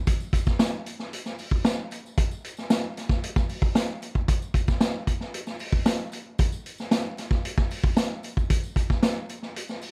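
A vintage drum kit leads this playful, strutting funk excerpt, holding a straight 4/4 groove at 114 BPM from 0.1 to 9.9 seconds. Its hi-hat, tight kick and medium-tuned snare sit up front with a saturated, gritty character, a mid-forward tone and a rolled-off top that carries the feel of a studio room. A jingly tambourine plays across the same span, sitting very quiet beneath the kit with its own small-room, acoustic quality. Light reverb and a layer of vinyl crackle give the recording an aged, lived-in surface. Cut from a longer piece, the passage stays in a single section throughout, keeping the focus on the strutting beat.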